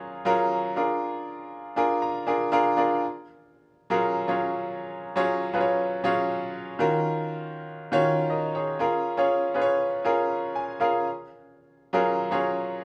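A bright, worn grand piano plays solo and up front in this upbeat, breezy pop excerpt at 120 BPM in F# major, moving through F#maj7, A#7, D#m7 and A#m7 chords in a straight 4/4 feel, with short fills at 1.5 and 10.3 seconds, and its natural tone sits in a wet studio reverb that gives the sense of a live room.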